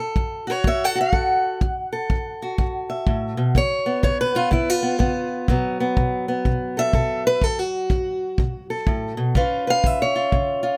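A swung 4/4 pulse at 124 BPM, with a 63% lilt on the eighth notes, drives this short excerpt of soulful, brooding acoustic country blues in F# minor, tuned to A4 = 444 Hz. A fingerpicked steel-string parlour guitar carries the melody from the first moment, spanning F#2 to F#5 with a bright, boxy tone that sits up front, and audible finger squeaks add to its intimacy. Entering at 0.2 seconds, a dark, tight kick drum played with brushes gives a smooth, low thump in a studio room and stays slightly behind the guitar in the mix. The harmony moves from F#m7 to C#7 and B5, then pauses on a brief chordless break at 7.4 seconds before returning to B5 and landing on a tense C#7#9. A light reverb gives the duo a modest sense of space across this single section, which runs to 10.8 seconds.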